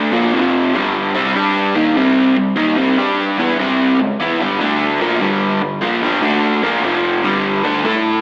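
A straight 4/4 pulse drives this swaggering, raunchy rock fragment at 148 BPM, cut from a longer piece and tuned with A4 at 441 Hz. A raw garage electric guitar plays solo for the full 8.2 seconds, picked and double-tracked, ranging from F2 up to A4. Its overdriven, lo-fi tone sits up front, with a slapback echo trailing each stroke. The chords are mostly power chords, moving through Bb5, F5, G5 and C5, touching E5 and a single C#m near 4.0 seconds, then D5 before returning to Bb5 and F5. A wet recital hall reverb with a 1.7-second decay gives the whole fragment a big arena sound.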